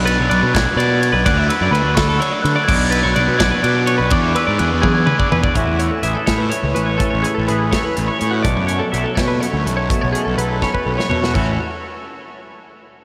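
Math rock with a midwest emo tint, this excerpt moves in a steady, straight 6/8 with an intricate, wistful mood, all soaked in a dreamy, cavernous reverb. A bright, compressed twelve-string electric guitar plays clean arpeggios up front throughout, its twang trailing through spring reverb and analog delay, while a fuzzy, overdriven picked bass sits equally forward underneath. For the first 5.3 seconds a glockenspiel struck with rubber mallets carries the melody in a mellow, bell-like ring, and a double-tracked overdriven guitar riff stays in the background until about 5.5 seconds. At 5.6 seconds a fingered, scooped twangy guitar takes over the accompaniment. An acoustic studio drum kit with a punchy kick, medium-tuned snare and rolled-off top drives the piece, adding fills as each passage closes.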